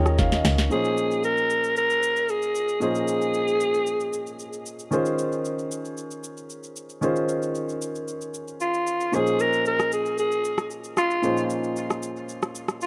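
Amapiano in Bb minor at 114 BPM, this hypnotic, late-night cut from a longer piece sets a growling, raspy alto saxophone up front, its delayed phrases arriving at 0.0 and again at 8.6 s over a polished grand piano that carries the Eb13sus4 and Bbm11 chords throughout. A woody, punchy log drum bass sounds only briefly at the opening, under piano and drum fills, while a smooth electronic R&B kit with a knocking kick, sharp snare, metallic hats, rim click and shaker runs beneath, its kick dropping out between 9.1 and 9.7 s. A lush hall reverb and the warbling pitch drift of worn cassette tape give the recording an aged haze.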